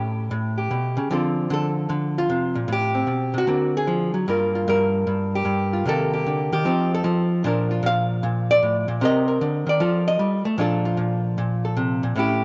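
A clean, picked archtop guitar, miked and amplified with a hollow-body tone, plays solo jazz in Bb major at 152 BPM with a relaxed, swinging eighth-note feel, moving through changes such as A7, Dm7, D7alt and Cm9 before settling on Bbmaj7 at 10.6 seconds, its up-front sound bathed in a wet spring reverb and heard from further back in the room in this 12.4-second excerpt cut from a longer piece.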